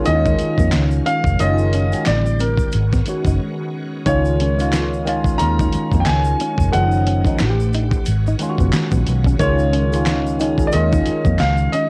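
A round, punchy muted electric bass sits up front in this late-night, sultry neo-soul R&B cut from a longer piece, joined by a gritty sampler-style drum kit with thumpy kick, fat snare, hi-hat and handclaps, a worn, slightly out-of-tune tine electric piano through a phaser, a clear, intimate grand piano melody with audible action noise and cassette tape colour, a dark, scooped clean electric guitar in the background from 0.3 seconds, a bright, shouting tonewheel organ with chorus vibrato and slow rotary speaker holding chords low in the mix, and a saturated tube shaker with finger snaps, all captured dry on a home cassette recording with a brief break at 3.4 seconds over lush ninth, eleventh and thirteenth chords.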